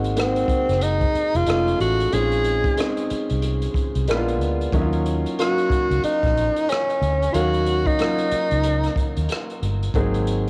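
Soulful and smooth, this swung neo-soul R&B fragment pairs a boxy grand piano accompanying over chords like Ab7, Bbm11 and Ebm9 with a dark, round muted fingered electric bass carrying tube saturation, and a gritty, cassette-tinged breakbeat kit of tight kick, hi-hat and rim click with a rolled-off top, while a warm tenor saxophone carries the jazz-inflected melody from 0.2 to 9.2 s with vibrato, soft attacks and scooped notes, the whole piece sitting in light reverb and small-room ambience with the character of a home cassette recording.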